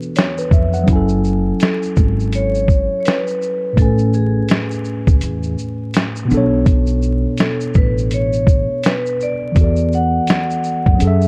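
A compressed, muffled sampler-style drum kit sits up front with a thumpy kick, medium-tuned snare, hi-hat and shaker, driving this melancholic, hazy lo-fi hip hop cut at 83 BPM with a 16th-note swing. A worn, slightly out-of-tune tine electric piano, filtered and mellow, carries chords moving from E9sus4 through F#m9, Amaj9 and Bm9, while a woody pizzicato upright bass with steel strings enters at 0.5 s. At 1.6 s a filtered vibraphone played with medium mallets and its motor off adds a metallic, ringing melody in a boxy small room, all wrapped in light reverb, a dark, warm production and vinyl crackle.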